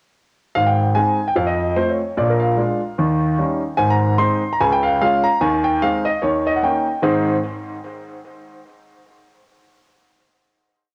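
Stride-piano jazz, swinging and exuberant at 148 BPM in Ab major, this whole short piece features a single clear, polished grand piano up front, carrying a single-line melody over a stride bass from 0.6 to 7.4 seconds, with a moderate spring reverb, small-room ambience and a homely cassette-tape coloring, moving through Ab, F, Bb7 and Eb7 before settling on a final Ab chord at 7.0 seconds.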